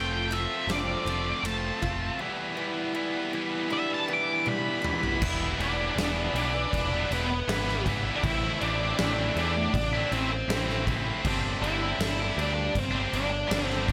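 Set in a small room with light reverb, this cathartic, dark stretch of quiet-loud alternative rock, cut from a longer piece, opens in half time with a dark octave-fuzz lead guitar soloing over a tight, double-tracked distorted riff guitar and a boxy parlour steel-string acoustic guitar picking fresh-stringed arpeggios. A growly, punchy electric bass sits up front, and a huge arena drum kit with a natural big-room sound joins at 0.3 s, rolling through a fill into the second section at 5.2 s, where the acoustic guitar drops out. The fuzz melody then carries on over the distorted riff, bass and drums as the harmony moves from Am to Gsus4.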